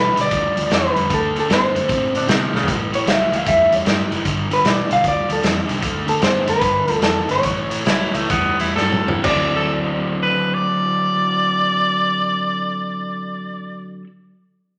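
This electric blues shuffle, cut from a longer piece, has a gritty, soulful mood and a swung feel over dominant-seventh changes. A slightly broken-up, lo-fi electric guitar through a small old amp carries the melody, while an overdriven semi-hollow guitar sits up front with a picked riff, and a round, foam-muted fingered bass anchors the low end. A raw garage drum kit, saturated and rolled-off on top in a bright stone room, pushes the groove with a punchy kick and drum fills. An edgy, forceful tenor saxophone with jazz-style vibrato makes a brief appearance early on, then returns at 7.9 s as an up-front second line. The groove slows from 5.8 s toward a fill, after which the drums drop out at 9.4 s and the remaining parts settle onto a closing D9 chord inside a moderate large studio reverb.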